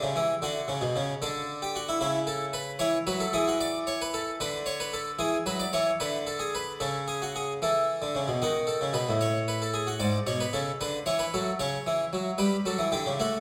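A close-miked, brilliant harpsichord with plucked octave strings sits up front as the solo voice in this lively, elegant baroque-style two-part invention in 12/8 at 75 BPM (dotted quarters), heard in a reverberant recital hall through a clip cut from a longer piece that moves into a new section at 8.4 seconds.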